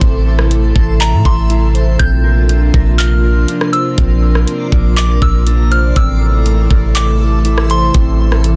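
Atmospheric cloud-rap hip hop with a floating, dreamy mood and a half-time feel, this short clip circles from Am to Bbadd9 and back. A soft, round 808-style bass sits deep and up front, while an electronic trap kit with a knocking kick, metallic hats, handclaps and rim clicks punches through from a small room. An airy, breathy pad holds sustained chords with chorus and sidechain pumping, and a dark, clean electric guitar picks fingered arpeggios through digital delay in the background. A reversed, granular texture swells high above with its own built-in reverb. At 1.0 s a delicate, tinkling FM bell enters with a warbling vintage melody, treated with chorus and delay, and it drops out at 7.9 s, all within a dry, dense, heavily limited modern master.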